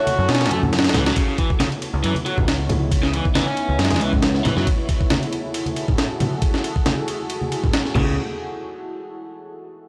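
A dry, gritty cassette-tape sound frames this energetic, swaggering breakbeat cut at 137 BPM in C# minor, where a compressed, pitched-up sampler drum kit with a thumpy kick and high-tuned snare sits up front beside round overdriven picked bass and distant low-tuned congas, while a bright, overdriven electric guitar riff carries 12-bit sampler grit and tape echo, a deep, moody detuned pad holds sustained chords under sidechain pumping, and a tine-like, warbling thumb-piano-style synth pluck sounds briefly in the background at the start, with the kick dropping out from 0.3 to 1.2 seconds before the groove settles over C#m9 and F#m9 chords.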